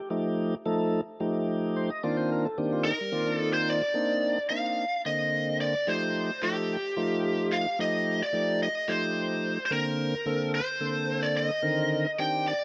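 Cut from a longer piece, this driving, nocturnal jazz in 7/8 at 219 BPM opens with a full, up-front tonewheel organ, lightly overdriven with key click through a slow rotary speaker, voicing chords in C dorian such as F9 and Cm11, before a picked, overdriven electric lead guitar through a small cranked amp enters at 2.8 seconds with a warm, up-front melody over Cm9, F9 and Bbmaj9, all set in light reverb.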